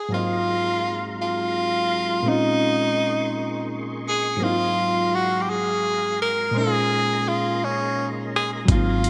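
Bathed in a lush hall reverb with bright 1980s-style digital polish, this late-night, sultry slow R&B fragment in Bb minor drifts at 56 BPM in 6/8, swaying between Ab13 and Bbm11. A breathy, subtoned tenor saxophone carries the jazz-style solo melody up front with vibrato, scooped notes and a touch of delay, over a barky, reedy electric piano phasing through its built-in speakers and a lightly overdriven tonewheel organ with key click, chorus vibrato and slow rotary speaker sitting in the background. Only at 8.7 s do a round, punchy dub bass and a gritty, compressed sampler-style kit with a thumpy kick and hi-hat step in up front.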